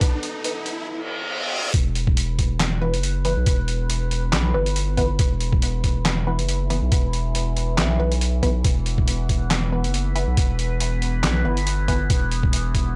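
A saturated, sine-deep sub bass sits up front in this dark, brooding deep dubstep excerpt with a half-time swing, joined by a thumpy, pitched-down kick and a gritty trip hop kit of handclaps, hi-hat and snare, while a riser and reverse cymbal build to the drop at 1.7 seconds, a bright overtone-sweeping drone holds sustained chords with chorus, reverb and phaser, and from 2.8 seconds nasal, detuned dub chord stabs pluck through phaser and dub echo, all on a dry, cassette-tape-worn recording.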